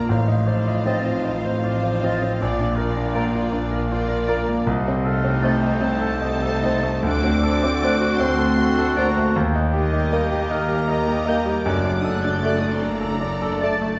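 This brooding, tragic passage from a romantic movement for piano and orchestra opens with a clear concert grand carrying the melody up front, its action noise audible and its bass deep, while a distant, smooth violin section sings a high melody above it and a second, lush violin section traces a supporting line. Very quiet, focused violas fill in the accompaniment, and a mellow French horn section holds sustained chords. The bowed cellos and double basses take up the bass in the background from the start, a warm oboe adds a second line, and just under a second in, a clear clarinet, an airy flute ensemble with crisp attacks and a dark bassoon join the texture. Timpani played with medium mallets enter barely audibly at 7.1 seconds, around a D7 chord. The slow, rubato 12/8 flow passes through shadowed harmonies, and the recording sits in a wet scoring-stage reverb, heard from further back in the room with its top end rolled off.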